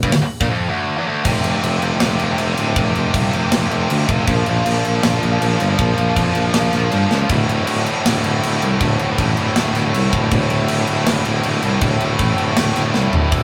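Heavy metal in D minor at 159 BPM, this short cut from a longer piece feels heavy and relentless, though a rough rehearsal-room recording with a moderate booth ambience. A heavy high-gain guitar carries the riff throughout, its bright, distorted, double-tracked tone sitting up front and ranging from D2 to F3. A dark, close-miked tuba plays the bass line in a classical style, reaching down to D1 and up to G2. A tight metal drum kit with bright cymbals, a medium-tuned snare and a tight kick adds an airy, polished acoustic sheen, using crash, hi-hat, snare and toms. After a break from 0.5 to 1.3 seconds, the band drops into half time, moving through F5, Bb5 and D5 chords, with drum fills marking 7.1 seconds and the final moments before the cut at 13.4 seconds.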